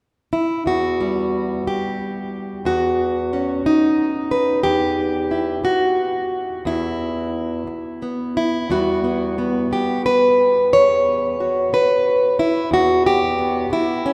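Folk fingerstyle for solo acoustic guitar, wistful and haunting, drifting freely in a rubato 6/8. The plugged-in steel-string guitar sounds full-bodied and jumbo-sized, sitting up front and fingerpicked from 0.3 seconds to the close at 14.1 seconds, with chords such as Emadd9 and C#m11/E spread across a range from E2 to C#5. A cathedral reverb in a church or concert hall gives the guitar a long, cavernous tail, and the passage is cut from a longer piece.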